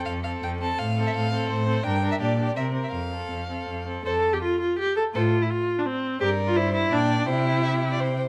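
A quick classical-period movement for string quartet in F major moves in a spirited, lively 3/4 at 166 BPM, its rubato feel lending the brisk pace some give. One bowed violin carries the melody, its warm tone shaded with vibrato and expressive portamento, while a second violin plays a focused, smooth-topped line just beneath it. The viola sits up front with a clear, even accompaniment, and the cello anchors the bass with a rich, intense sound that also stands close. The harmony moves through F, Gm and C7 in a short phrase that is then restated, the second pass turning through a rootless Dm7/A before settling on C at 7.3 seconds. Close, detailed microphones and light reverb capture this brief cut from a longer piece, with the viola sounding most prominent.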